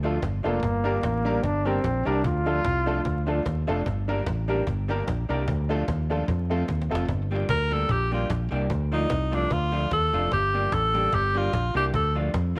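A swung, driving ska groove in 4/4 carries this energetic fragment of a longer piece, with a woody cajon played by hard hands, close and faint in its snares, touched by tape echo. Beneath it, a fingered electric bass sits up front with a dark, round, direct tone, while a vintage hollow-body jazz guitar adds clean, picked accompaniment that is also given tape echo. A warm upright piano, intimate enough that its action noise can be heard, punches out stabs through the opening stretch before dropping away at 7.0 seconds. Early on, a clear trombone takes the melody up front with vibrato, a smooth top and a touch of tube saturation. After a drum fill, a bright alto saxophone steps forward for a solo from 7.5 seconds, singing with vibrato and scooped notes in a pop style. The whole is framed by light reverb, a small room ambience and a layer of vinyl crackle.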